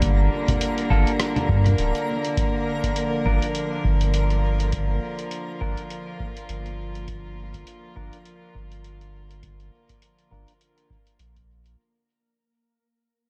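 A 102 BPM pulse in 4/4 with a 57% swing on the sixteenths carries this meditative, deep ambient dub fragment, anchored by a deep, tape-warm electronic kick sitting in the background and a muffled, compressed sampler-style kit of congas, hi-hat and rim click trailing dub echo. Up front, a round sine sub bass holds the low end with a fast attack and long sustain while a filter sweep runs across its whole length. A rich chamber string section, bowed with light vibrato and a reedy gut-string, period-style tone, plays sustained chords over Gm7 moving to Bb/G at 2.4 seconds, sounding distant despite its forward place in the balance. Behind it, a reversed, swelling texture with a detuned, granular, bright shimmer and its own reverb drifts in the background. A dark, clean electric guitar adds picked stabs from 0.9 to 10.5 seconds through a low-pass filter, filter sweep and dub echo, all within a light digital ambience as the cut from a longer piece fades out.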